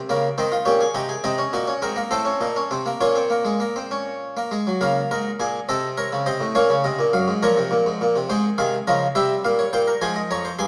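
Driving yet contemplative, this brief cut from a longer baroque-style fugue in Bb minor unfolds for solo harpsichord at 69 dotted-quarter beats per minute in a straight 6/8. The Italian-style harpsichord sits up front with a plucked, brilliant tone reinforced by octave strings, its four voices spanning F2 to C6 as the harmony moves through diminished chords before settling onto an F minor cadence near 10.0 seconds. A moderate recital hall reverb lends the sound a natural sense of space.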